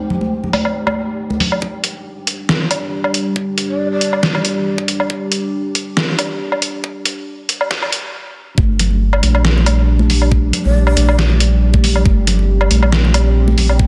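Heavy and dark, this deep dubstep excerpt at 138 BPM in G phrygian opens with a moody, detuned analog pad carrying 12-bit sampler grit, a faint airy wind-like texture, and echoing congas, joined at half a second by a muffled, overdriven trip hop sampler kit of hi-hat, snare and woodblock. It then builds from 1.6 seconds as a knocking, up-front electronic kick enters and the drums drive a half-time swing under a filter sweep, with brief breathy ney phrases in dub echo, before a stop gives way at 8.6 seconds to a drop where a round, soft sub bass and the congas return.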